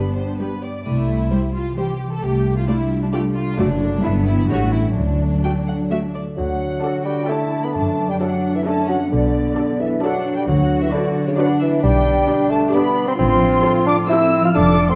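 An up-front solo bassoon with light vibrato enters at 6.4 s alongside a pure, hollow flute section in the background, lending this playful, whimsical cinematic film cue in 3/4 a magical, mischievous air over ringing, fingerpicked concert harp arpeggios and veiled con sordino strings: a lush, soft-attacked violin melody in the background, a smooth-topped violin second line, close violas, cellos and double basses carrying the bass, with a brief triangle touch at 0.9 s, set in a moderate scoring-stage reverb with a dark production.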